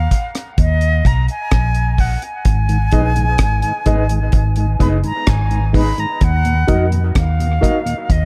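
Meditative and heavy, this short dub reggae excerpt moves at 64 BPM in Eb minor, shifting from Ebm to Abm at 2.5 seconds and back at 6.2 seconds. An airy, close-miked concert flute carries the melody with expressive vibrato and dub echo, over an up-front, foam-muted fingered electric bass and a dry, tight-kicked drum kit of hi-hat, kick and rim click. In the background sit a clean, fingered electric guitar with tremolo and echo and a round tonewheel organ turning through a slow rotary speaker, while a reedy, worn and slightly out-of-tune electric piano adds fast-tremolo stabs that trail off into dub echo.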